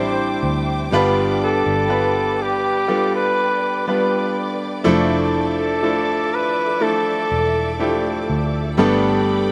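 Hopeful and emotional, this slow pop ballad at 61 BPM in 4/4 sets a jazz-style flugelhorn melody, warm and scooped with a slapback echo, up front beside a bright, brilliant grand piano, moving from Cadd9 through G7 and Dmadd9/F to Gadd9. Beneath them, a fingerpicked nylon-string guitar plays full-bodied arpeggios with audible finger squeak and its own slapback echo in the background, while a lush, woody string section sustains bowed chords with vibrato. A dark, round, foam-muted electric bass anchors the low end, and the whole excerpt sounds dry, as if played in open air.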